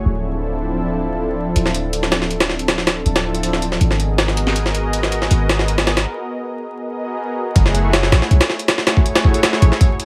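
Wrapped in vinyl crackle and light reverb, this nostalgic, atmospheric drum and bass excerpt at 160 BPM opens on a thick, warbling, detuned sawtooth pad with chorus moving from Dm9 to G#m9 over a deep, boomy 808-style sine bass, before a gritty, compressed, pitched-up jungle sampler-style kit with a thumpy kick and high-tuned snare enters at 1.6 s, followed by a break at 6.1 s and a drop on F#m9 at 7.6 s.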